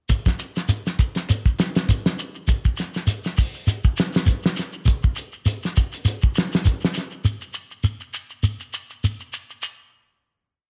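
A cloth-damped drum kit and a shekere start together in a short, intense and defiant afrobeat piece at 100 BPM with a lightly swung 16th feel. The thuddy kit plays an afro groove with a fat snare, tight kick and hi-hat, its top rolled off, while the grainy, mellow gourd shaker sits close, dry and up front. The kit stops at 7.1 seconds, leaving the shekere to carry on into a final hit at 9.6 seconds, all in a small studio room with light reverb.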